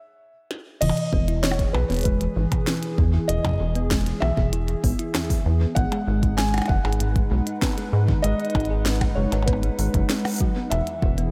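A glitchy drum kit opens this wistful, intricate IDM excerpt with a short fill at 0.5 s, its tiny snare, clicky hats, toms, crash and percussion blips trailing into a diffuse ambient delay. At 0.8 s the rest of the band arrives in E major at 97 BPM in a straight 4/4: a felt-muted upright piano sings a soft, boxy, intimate melody between B4 and G#5, and a thumb-piano-like synth pluck spins round, tine-like arpeggios dressed in chorus, 12-bit sampler grit and the same drifting delay. Beneath them, a hollow, flute-like pad holds dark, detuned chords with its own chorus and grainy sampler texture. A deep electronic kick soon joins, while a rubbery, bouncy square bass with a resonant filter pluck sits up front as the loudest part, anchoring the low end. The harmony moves from Emaj7 to G#m7 at 5.8 s before settling on E, with the kick and drum kit re-recorded in a small room and a light reverb giving the piece a close, introspective glow.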